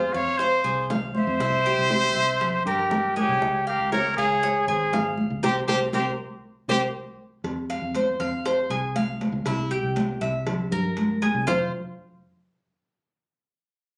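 A hushed, breathy trumpet opens this cut from a longer Cuban son and guajira piece, carrying the melody close and intimate with a soft attack and gentle vibrato, while a bright, chiffy jazz flute traces a second line in the background. Up front beside the trumpet, a picked Cuban tres spins arpeggios on metallic double strings, and a round, foam-muted fingered electric bass holds the low end. High-tuned congas with a thin skin sound distant, and tight bongos and cowbell played with hard hands sit further back, all at a straight 119 BPM in F harmonic minor. The band hits an accent together from 5.4 seconds, with a drum fill landing at 7.2 seconds near its close. By then the trumpet and flute have fallen away, leaving the tres, bass and hand percussion to carry the groove. Heard through a phone in a club with moderate reverb, the recording feels warm and nostalgic.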